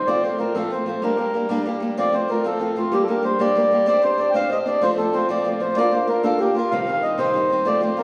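A reedy, round accordion carries the melody up front through this spirited, driving Celtic jig in 6/8 at 126 BPM, while a dark, boxy picked old ladder-braced acoustic guitar accompanies over chords moving from F and Gm through Csus2, Bb and Cm, the whole 8-second fragment of a longer piece bathed in the wet reverb of a recital hall.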